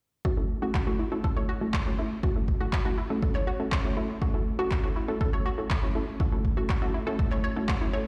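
Progressive house at 121 BPM in F# minor, this dreamy, driving excerpt rests on a single F#m7 chord, with a punchy, overdriven electronic kick up front and layered, overdriven handclaps joining at 0.7 s, both in a small room reverb. A round, detuned analog pluck plays arpeggios through chorus, delay and sidechain pumping while a filter sweep runs across it, and a lush, bright unison pluck sits forward with pumping, delayed stabs. The whole mix sounds as if played on a big sound system in a bare room, bathed in large studio reverb.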